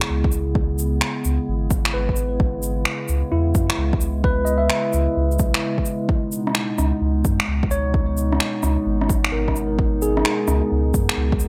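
A bright tine electric piano with delay, a warbling, lo-fi tape-like pad with chorus, and overdriven electronic finger snaps, shaker and rim click bathed in gated reverb open this nocturnal, wistful future garage excerpt at 130 BPM in a swung 4/4, joined at 0.1 seconds by a round, soft dub sub bass and at 0.2 seconds by a deep, up-front electronic kick, while the pumping piano, pad and bass move from C#m7 to G#madd9 at 6.1 seconds within a 1980s-style digital sheen.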